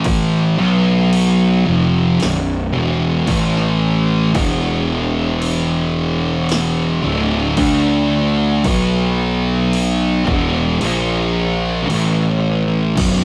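A rough rehearsal-room recording with light reverb and warm saturation carries this heavy, hypnotic stoner and doom metal excerpt at a crawling 56 BPM in 4/4, tuned slightly flat to A4 = 437 Hz, where a thick, double-tracked fuzz guitar riff moves through power chords from A5 to B5, E5 and D5, a growly overdriven picked electric bass sits up front beside it, and a punchy analog drum machine with tape-warm kick and snare pounds along until those two drop out at 10.8 seconds, leaving the crash cymbal over a closing move from A#5 to A5.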